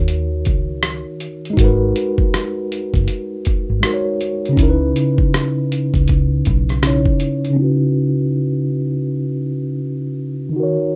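A mellow, clean tine electric piano and a dark, round, foam-muted fingered electric bass open this nostalgic, melancholic lo-fi hip hop piece at a swung 80 BPM in C# dorian, joined almost at once by a muffled, compressed sampler-style kit with a thumpy kick, hi-hat and rim click, before the bass stops at 7.0 seconds and the drums at 7.6 seconds, leaving the piano alone under a filter sweep on a C#m11 chord, set in a wet studio ambience with a rough, dusky home-demo sound.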